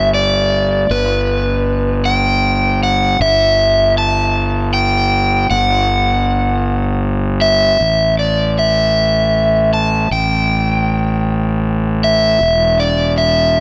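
Light reverb and a digital ambience give this short excerpt of hopeful, soaring post-rock a soft halo. Set in a gently rolling 6/8 with a straight feel, it is tuned to A4 = 436 Hz. An overdriven semi-hollow guitar carries the melody up front, its warm, picked, hollow-body tone colored by an analog delay, high in its register. Beneath it, a fingered electric bass growls low and punchy through fuzz and overdrive, sitting direct and amped in the foreground. The opening passage hangs unanchored by any chord, and at 7.8 seconds a second section arrives on an A5 power chord, giving the music a firm, lifting footing before the harmony dissolves again at 12.4 seconds.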